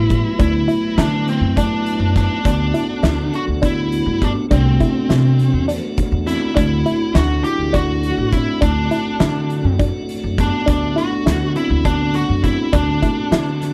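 Intricate and bright, this progressive instrumental fragment moves in 7/8 at 204 BPM in D mixolydian, with a smooth overdriven lead guitar carrying the melody through slapback echo over a ringing kalimba second line, a piping tonewheel organ turning on a slow rotary speaker in the background, a woody pizzicato upright bass, soft round pluck arpeggios with chorus, and an oversized low-tuned drum kit with a boomy kick and fat snare in a pumping big room, the whole set in light reverb.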